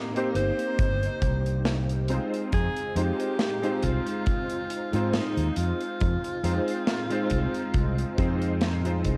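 A slow 69 BPM groove in 4/4 with a light swing on the sixteenths sets a melancholic, hazy vaporwave mood over Cm7 moving to Fm7, as a boomy kick drum joins at 0.8 seconds beside the hi-hat and medium-tuned snare of a big rock kit. An up-front fretless electric bass holds the low end while a clear, vintage electric grand piano with a clangy bass register, long sustain and ensemble chorus plays accompaniment. A bright alto saxophone sings the melody with vibrato and tape echo, and the whole fragment sits in a small, lightly reverberant room on worn cassette tape with warbly pitch drift, closing on a drum fill at 8.6 seconds.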